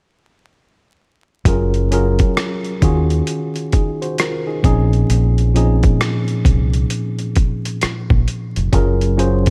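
A bed of vinyl crackle sits over this short, sultry fragment of neo-soul R&B, cut from a longer piece, and the drums, bass and electric piano all arrive together at 1.5 seconds. The feel is slow and soulful in 4/4, with a lazy swing on the sixteenths. Up front, a sampler-style boom bap kit plays hi-hat, rim click and a thumpy kick, its sound compressed, pitched down, gritty and overdriven. Beneath it, a deep dub fingered electric bass sits low, dark, round and punchy with a direct, amped tone. A worn, slightly out-of-tune tine electric piano, lightly overdriven and heard through its built-in speakers, also sits forward in the mix, voicing lush chords that move from Gbmaj9 through Ebm11 and Bbm11 before settling back on Gbmaj9 at 8.7 seconds.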